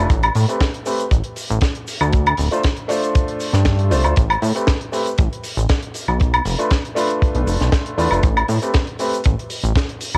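A glossy, nasal chorused synth bass with a filter-plucked, saturated edge anchors this sensual, cosmic nu-disco excerpt, joined by a clear but worn baby grand piano carrying cassette tape colour and analog delay until 9.1 seconds, a tight, rolled-off kick and a small-room funk kit of high-tuned snare, hi-hat, shaker and woodblock, both drum parts also tape-tinged, all set in light reverb with a homespun cassette feel.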